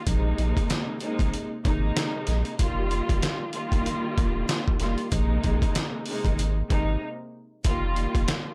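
A compressed, pitched-down sampler-style drum kit sits up front in this moody, gritty boom-bap hip-hop excerpt at 95 BPM, its thumpy kick, medium-tuned snare and hi-hat carrying a swung 16th-note feel and the air of a large room. A lush, bowed studio string section, dark with a smooth top and expressive vibrato, moves between Bb9sus4 and F9sus4 over a deep, round sine sub bass. A brief break arrives at 7.0 seconds in an otherwise dry mix.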